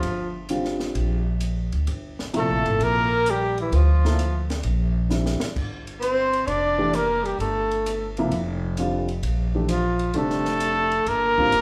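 A breathy, mellow trumpet carries the melody over a subtone tenor saxophone second line, woody pizzicato upright bass and a dark, compact cocktail drum kit in this intense, spiritual modal jazz excerpt at 131 BPM, swung in G dorian, with a baby grand piano of short sustain joining the accompaniment at 0.5 seconds, a drum fill at 5.1 seconds before the harmony moves from Gm7 to Bb at 5.6 seconds, and the band playing live together in a large studio with moderate reverb.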